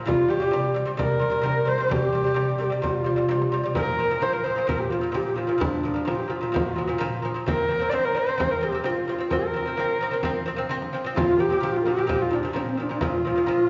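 Mongolian folk in a traditional vein, this excerpt moves at 130 BPM in a straight 4/4, galloping and proud, set in a Bb gong mode. A dark horsehead fiddle carries the melody up front, its woody, husky bowed tone marked by vibrato and portamento under a smooth top. Beneath it, a fingerpicked lute on double gut strings spins delicate arpeggios, some strings doubled at the octave, also placed close in the mix. A low bamboo xiao traces a second line in the background, its pure, end-blown sound softly attacked and expressive with vibrato, while a frame drum keeps time from a close, dry position. The players sit in a wet recital hall whose reverb lends a churchlike bloom, and the passage shifts into a brief new section at 11.2 seconds before the cut at 13.7 seconds.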